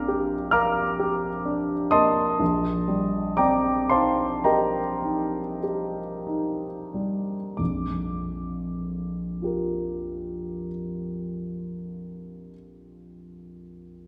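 A grand piano rings out from a little back in a concert hall, wrapped in a wet, lingering reverb, yet its tone stays warm, present and up front, with long sustain on every note. This is a short excerpt from a longer impressionist classical piece for solo piano in Bb major, dreamy and luminous in mood. The pulse moves very slowly in 9/8, around 28 to 45 beats per minute counted in dotted quarters, and the playing is freely rubato. Across the opening 7.6 seconds the pace slows as the harmony rests on a Bb major chord with added sixth and ninth colours, while the piano spans from a deep Bb1 up to a bright F6. At 7.6 seconds a second passage begins on a plainer Bb sixth chord, and the piano's resonance carries through to 14.1 seconds.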